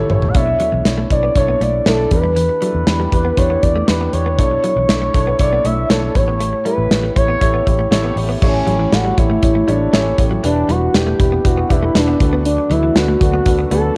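A warbling, sawtooth portamento synth lead with chorus and vibrato carries the melody through this moody, dramatic 1980s-style pop excerpt at 119 BPM, over a dark, short-sustain baby grand piano, a round, punchy foam-muted fingered bass, a polished studio drum kit with bright cymbals that opens on a brief fill, a compressed, scooped clean guitar riff tucked in the background, and a very quiet string-machine cello pad entering at 12.5 seconds, all carrying the character of a home cassette recording with light reverb and studio ambience.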